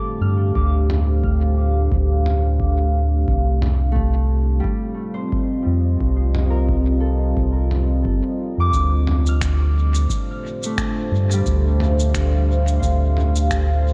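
A round, dark analog bass sits up front with tube saturation, anchoring this deep, spacious ambient dub fragment from 0.2 seconds on. A moody, detuned pad with chorus and long sustained chords spreads beneath a mellow, ringing Celtic harp whose fingerpicked arpeggios trail through analog delay. An electronic kick enters at 0.6 seconds, joined by a muffled, pitched-down sampler-style kit of cabasa, finger snaps and toms soaked in dub echo, all set in a dreamy cathedral reverb.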